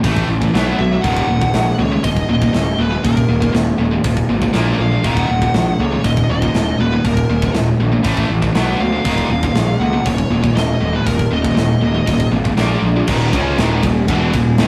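Dark and epic, this heavy metal excerpt drives forward at 120 BPM in a straight 4/4, built around Eb minor with power-chord shifts through A5, B5 and Bb5. Two bright, picked, distorted rhythm guitars sit in the background playing the riff, one of them scooped and high-gain, while a growly fuzz electric bass, direct and amped, sits up front. A tight acoustic metal kit with a medium-tuned snare and a tight kick drives the groove on crash, hi-hat, ride, snare and kick, its sound big-roomed, gritty and forward in the mids. A high-gain lead guitar with a warm, picked tone carries the melody from 0.8 to 12.3 seconds, and a brief closing section begins at 13.1 seconds. The whole has the rough, saturated feel of a rehearsal room, wrapped in a wet small-room reverb.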